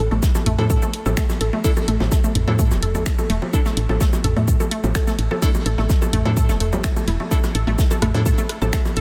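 A steady straight 4/4 pulse at 127 BPM drives this clinical, hypnotic minimal techno excerpt, where a punchy, up-front electronic kick anchors a round, woody FM bass and a squelchy, resonant blip pluck riff, both pumping with sidechain and the pluck adding chorus and delay, while a tape-warm organic electronic kit of bongos, rim clicks and toms with tape echo, a house kit of finger snaps, hi-hat and shaker, very quiet brushed jazz hi-hat and snare, and a crisp, very quiet phaser-tinged wavetable chord stab from 0.6 to 8.2 seconds fill out a lightly reverberant space.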